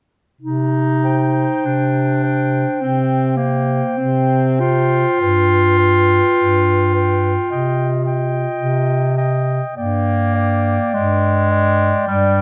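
Classical and elegiac, this melancholic, rubato passage for a single-reed quartet in C minor, cut from a longer piece at 46-56 BPM, opens at 0.4 seconds with a bright, punchy clarinet accompaniment and a warm bass clarinet up front, joined at 1.0 seconds by a mellow, smooth-topped clarinet melody on G5 and a clear clarinet second line, all moving over Cm, G7 and Gm harmonies and captured by close, detailed microphones with light reverb.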